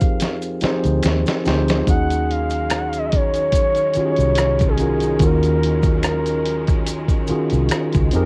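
A lightly swung 4/4 groove from a gritty, compressed sampler-style drum kit with a thumpy kick opens this smooth, soulful neo-soul R&B excerpt with a fill, under a round, dark, foam-muted fingered bass, a mellow, clean tine electric piano, a gliding, detuned portamento lead with chorus and vibrato, quiet background maracas and finger snaps, and a lush bowed string section that enters at 1.9 seconds, all on a dry, tape-tinged home cassette recording.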